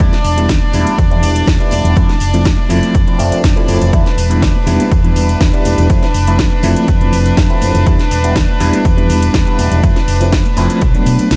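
A punchy, overdriven electronic kick drives a straight 4/4 groove at 122 BPM alongside a house kit with a cracking snare, metallic hats and cabasa that pumps against it, while soft-handed tambourine and congas sit bright in the background; the kick drops out at 10.9 s. In this groovy, nostalgic slice of filtered disco house in E phrygian, a dark, round hollow-body bass anchors the low end as a gritty tine electric piano, run through a combo amp with medium tremolo and phaser, pumps through chords alternating Em7 and Fmaj7 before a closing Bm7 at 10.8 s. A chamber violin section holds biting yet smooth-topped sustained chords above, with the whole mix set in light reverb.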